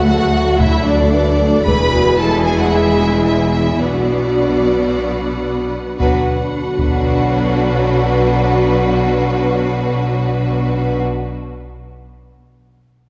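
Cinematic, epic orchestral film score at 112 BPM in B dorian, dramatic and heroic, with a smooth bowed violin section singing the melody over a second violin line, focused violas, smooth cellos and expressive double basses, while mellow French horns, very quiet dark trombones and a symphonic string section hold sustained chords that stop at 10.2 s, saturated taiko drums with heavy sticks hit from 0.6 s and again at 6.0 s, and the whole orchestra sits further back in a wet concert hall over a D, E, Bm progression.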